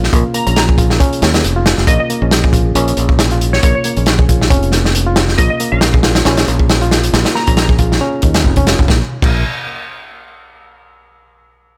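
A crunchy breakbeat kit drives this gritty, raw breaks excerpt at 137 BPM in 4/4 with a 16th-note swing, its saturated kick, snare, hi-hat, crash and dark cymbals sitting up front over a growly fingered electric bass, while a reedy electric piano riff with vintage sampler grit and delay repeats over a Bb minor harmony. From 0.3 to 7.6 seconds a glassy, detuned wavetable pluck adds a crystalline, warbling melody colored by chorus, delay and a telephone-like filter. A brief chordless closing section follows from 8.9 seconds, and the remaining parts drop out by about 9.4 seconds. Studio reverb surrounds the mix, and a faint mains hum sits beneath it.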